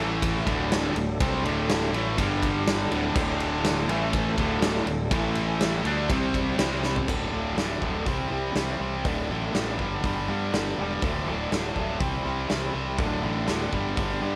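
A straight 4/4 groove at 122 BPM drives this swaggering, sunny classic rock excerpt in D mixolydian, tuned to A4 = 444 Hz. The huge arena drum kit sits up front with a natural, big-room acoustic sound, a punchy kick and a medium-tuned snare, moving across hi-hat, ride, crash and toms and dropping a fill at 6.8 seconds. Underneath, a fingered electric bass growls with fuzz, while two tight, distorted guitars play a picked riff in the background, joined until 7.1 seconds by a bright, double-tracked cranked stack guitar with overdrive. In that first section, a very quiet tonewheel organ holds full, sustained chords, lightly driven, with key click, chorus vibrato and a slow rotary speaker, as the harmony moves from D through G5 and A5 to C5. At 7.1 seconds, a picked steel-string dreadnought acoustic guitar enters in the background with audible finger squeak, and the chords shift to a Dadd9, C and G cycle. 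Light reverb and small-room ambience frame the sound.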